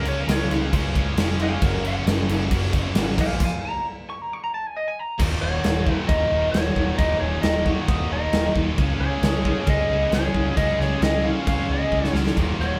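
Hard rock with an aggressive, heavy mood, this excerpt from a longer piece drives along at 134 BPM in a straight 4/4, centred on Eb minor. A lightly driven lead guitar carries the melody with a twangy, slightly broken-up, compressed tone, playing a solo through the opening 5.2 seconds that includes a stop in the band. Beneath it, three high-gain rhythm guitars pick out the riff: one heavy and very quiet, and two scooped, distorted parts sitting in the background, one of them double-tracked. A vintage foam-muted picked bass adds a dark, round punch, while a big acoustic rock kit sits up front with a punchy kick, a medium-tuned snare and bright crash cymbals, capping the passage with a drum fill at 11.9 seconds. From 5.4 seconds an octave-fuzz lead guitar joins in the background with a dark second line as the harmony moves to Eb minor and then Db. The band sounds as if playing live together in one room, wrapped in a moderate studio reverb.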